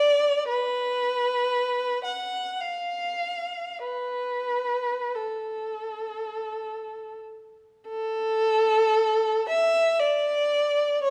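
A moderate recital-hall reverb surrounds a lone violin, cut from a longer classical piece in a free, rubato triple metre that feels lonely and mournful. The warm, bowed tone sits up front yet carries a distant quality, its vibrato and sliding portamento shaping expressive lines between A4 and F#5. The opening phrase runs to 7.9 seconds, then returns and carries on until the clip ends at 11.1 seconds.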